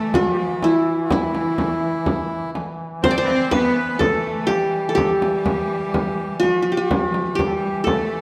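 A moderate recital-hall reverb lends space to this short excerpt, cut from a longer Arabic maqam ensemble piece in a straight 4/4, with a longing, melancholic mood. Up front, a mellow, bright-edged qanun carries the melody, its plectrum-plucked triple strings trailed by tape echo. Behind it, a reedy, close-miked accordion and a lush, bowed symphonic cello section with smooth vibrato each play a second line, while a duduk holds a single low drone with soft attack and scooped, folk-style notes. A frame drum played with soft hands and a small-room character sits near the front, entering at 0.1 s and stopping at 8.0 s. The passage unfolds as one continuous section that runs to 8.2 s.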